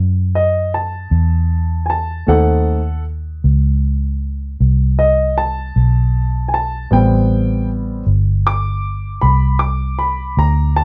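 A light reverb surrounds this short cut from a longer slow blues, with both instruments sitting up front. The mood is mournful and smoky, and the 12/8 metre is played with a straight feel. A dark, round, foam-muted electric bass with an amped vintage character holds down the low end from the very start. At 0.4 s a clear, woody upright piano enters and carries a polished solo for the rest of the passage. The harmony rests on a B7b9 chord before shifting to Am9 at 6.9 s.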